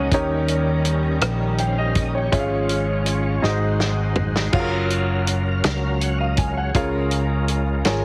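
Slow, hopeful gospel in 6/8 at 54 BPM, cut from a longer piece, with a clear, deep-bottomed grand piano accompanying over punchy fingered electric bass and a dry, dark-cymbaled soul drum kit, while a gritty overdriven tonewheel organ holds sustained chords through a fast rotary speaker and chorus vibrato, reedy background strings sustain chords until 4.5 seconds, a drum fill leads into the second section and the organ adds a fill at 7.8 seconds, all set in a small room with light reverb and a heavily compressed radio sound.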